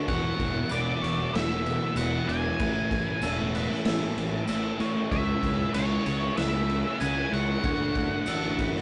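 Hazy and blissful, this short shoegaze and dream pop cut wraps a dark, fuzzed octave lead melody in a dense bed of guitar riffs: a crunchy overdriven part and a very quiet double-tracked sludgy one, a thick fuzz guitar, and a twangy, compressed clean guitar picking arpeggios in the background. A growly, overdriven fingered bass and an up-front, gritty garage drum kit with punchy kick, snare and crash drive the chords from Esus2 through Amaj7, C#m7 and Dmaj7, while a jingly tambourine sits back in the mix from 0.7 seconds. The sound is a rough rehearsal-room recording, with tube saturation, a rolled-off top and a wet small-room ambience.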